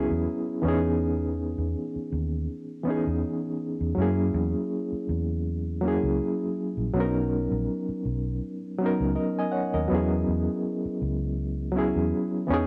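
A reedy, barky electric piano leads this nostalgic, dreamy lo-fi hip hop excerpt at 81 BPM with a light swing, its lightly overdriven tone shimmering with fast tremolo, cassette tape grit and plate reverb as it moves through E6, C#m9, F#9 and Bmaj7. Beneath it, a dark, round, foam-muted fingered electric bass sits up front for the full 12.7 seconds. Both parts are heard in a wet small room with the hazy character of a home cassette recording.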